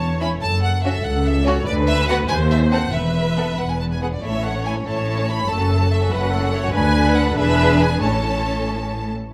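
A focused, vibrato-rich violin melody opens over portamento-inflected violas, smooth bowed cellos and soft-attacked double basses, with a lush second violin line joining at 0.2 seconds, in a graceful, cheerful classical-period movement for string orchestra in A major and 6/8 at 95 BPM, played with rubato and heard in a short passage cut from a longer piece, set in a moderate recital hall reverb as the harmony moves from F#m through Bm/D and E7 to a home cadence on A at 8.0 seconds.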